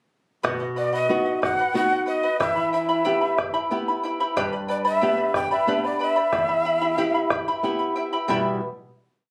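This short, complete Andean folk piece opens at 0.4 s with charango, flamenco guitar and bombo entering together in triple metre with a straight feel. The bright charango strums open chord shapes on its double strings, some doubled at the octave, for a shimmering edge, while the fingerpicked flamenco guitar, with audible finger squeak, lays down an oompah of bass notes and chord figures. The deep, dark bombo keeps an evenly spread pattern with a small-room sound. At 0.8 s a breathy cane quena takes the melody up front, end-blown and tongued with chiff, vibrato and lifted highs, its somewhat unsteady song phrases built from short motifs in a wistful, earthy mood. The harmony moves from B to Em, G and back to Em before the ensemble settles on a final chord at 8.3 s, all captured on a phone in the room with light club reverb.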